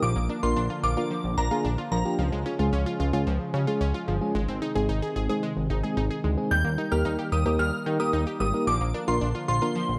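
Lightly reverberant, this bright, upbeat synth-pop excerpt sets a glossy, up-front chorused synth bass beneath a soft, warbling FM electric piano with tremolo, a thick detuned unison pad sitting in the background, and round, evolving analog-pluck arpeggios with slapback echo, while a dreamy, shimmering FM bell with ensemble chorus rings out at the start and returns at 6.5 seconds.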